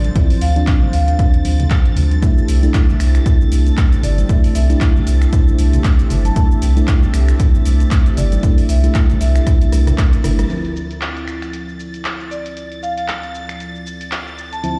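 A dry mix played through a big sound system in a bare room, with a large studio reverb around it, carries this moody, late-night deep house excerpt in D minor at 116 BPM with a swung 4/4 feel. An up-front punchy kick and a deep, round sine sub bass pump beneath sidechained FM electric piano stabs that are soft and dark. Beside them sit a smooth, detuned sawtooth pad and a faint, shimmering string machine, while a band-limited vintage marimba with medium hard mallets carries the melody through analog delay over Dm7 and C6. A muffled drum machine adds snaps, claps, hats, rim clicks and shaker, and bright congas and bongos stay in the background. Around a drum fill and a band accent at 10.4 seconds, the kick, bass and hand percussion drop out, and filter sweeps run on the electric piano and pad until 14.8 seconds.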